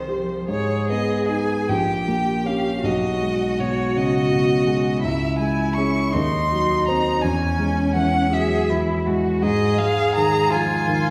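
Violin, cello and dark baby grand piano enter together in this slow, romantic piano-trio movement in 6/8, taken at 45-56 BPM in dotted quarters with a rubato feel and a melancholic, yearning mood. The focused, clear violin sings the melody with vibrato, the rich cello bows a smooth, even second line beneath it, and the mellow piano accompanies with long sustain and a vintage tone, its harmony moving from G#m to C#m before settling on Ab5. A wet scoring-stage reverb places the listener further back in the room, lending the trio a distant, spacious sound in this passage cut from a longer piece.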